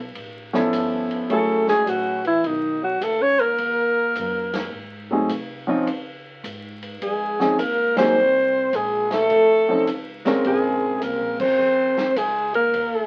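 Vinyl crackle from a very old 78 rpm record sits over this moody, late-night fragment of small-group swing and bop, heard in a modest small room and cut from a longer piece. A woody pizzicato upright bass starts things off in the background, joined almost at once by a vintage drum kit with dark cymbals, a medium-tuned snare, a punchy kick and a rolled-off top. A grand piano comps up front, and at 1.3 s a warm alto saxophone takes the melody with subtone, vibrato, scooped notes and a smooth top. Beneath it, a trombone in a bucket mute carries a veiled, distant second line with its own vibrato and scoops. The harmony moves through chords such as Db7alt, Ab7b9 and Dbmaj9, and the band hits accents at 7.9 and 11.3 s.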